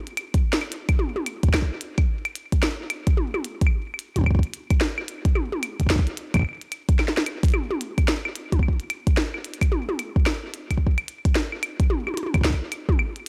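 IDM at 110 BPM in 4/4, this short excerpt cut from a longer piece carries a melancholic, glitchy mood, with a 62% swing on the 16ths giving the beat a loose, lilting push. A glitchy drum kit of claves, hi-hat, snare drum and toms enters at 0.1 s and runs to 13.3 s, its tiny snare and clicky hats sitting up front with a small room ambience and a touch of tape echo. An electronic kick drum joins at 0.3 s, deep and up front in its own small room, playing until 13.0 s and standing a little louder than the kit. The whole passage stays within a single section, the two percussion parts carrying the piece on their own. Light reverb and a digital ambience frame the recording, lending the sparse, produced sound a faint sense of space.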